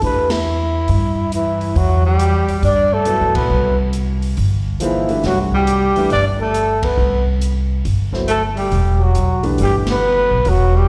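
A dark, breathy trumpet sits up front and carries the melody through the whole 10.9-second fragment, its soft attack, vibrato and close, whispered tone giving this modal jazz passage in C lydian a spiritual, open mood at a swinging 138 BPM in 4/4. From 1.3 seconds a clear, subtoned alto saxophone adds a second line below it, intimate and lightly vibrato-tinged, and both horns carry a slapback echo. A concert grand piano supplies accompaniment with deep bass, long sustain and audible action noise, touching the opening Cmaj9 briefly before returning at 3.1 seconds, also with slapback echo. Underneath, a woody, up-front pizzicato upright bass with steel strings holds the low end, while an acoustic drum kit with dark cymbals, a medium-tuned snare and a boomy kick plays hi-hat, ride, snare and kick further back. The band hits accents together at points such as 0.2 and 6.8 seconds, and the whole performance sounds like a live gig heard through the venue's PA, set in recital hall reverb.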